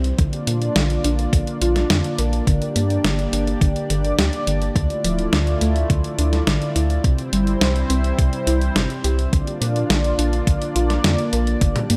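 This nocturnal synthwave excerpt at 105 BPM in 4/4 opens with an up-front 12-bit drum machine with a medium-tuned snare, hi-hat and toms, a deep, round analog bass, a shimmering, detuned pulse-width pad that pumps with sidechain motion while holding sustained chords through Bb, Gm, Dmadd9 and C, and a soft, gentle pluck tucked in the background spinning chorused, delayed arpeggios. A thumpy, tape-tinged electronic kick arrives a moment later to drive it all, set in light digital ambience.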